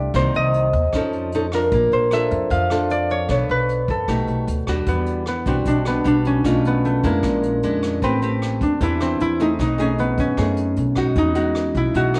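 Wistful and intimate, this short fragment of a longer bossa nova piece moves in a straight 4/4 feel. A fingerpicked concert harp carries the melody with a ringing, up-front tone, sitting slightly above the rest of the group. A small-sounding nylon-string guitar, also fingerpicked and close, supplies the accompaniment through lush extended chords such as Cm7, Bbmaj7 and Bm9. Beneath them, a pizzicato upright bass on gut strings adds a woody, thumpy foundation. A vintage brush drum kit joins at 0.1 s with hi-hat, a punchy kick and rim clicks, heard distant and roomy with a warm, rolled-off top. Light reverb surrounds the ensemble, and at 4.9 s the harmony turns toward a new section that settles on Emaj9 at 11.2 s.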